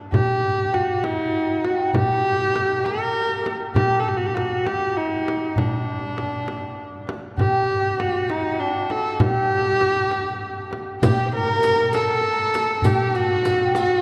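A shimmering, hammered santur opens this longing Persian modal piece in 6/8 at 66 BPM in G avaz esfahan. An up-front bowed kamancheh joins almost at once with a rich, focused, melancholic melody full of vibrato and portamento, over a small, bright frame drum and a deep, very quiet tombak. At 11.0 seconds a distant, earthy chamber violin section adds a second line in the background alongside the jingles of a vintage, band-limited riq, all set in a church or concert hall with a wet cathedral reverb of 4.8 seconds.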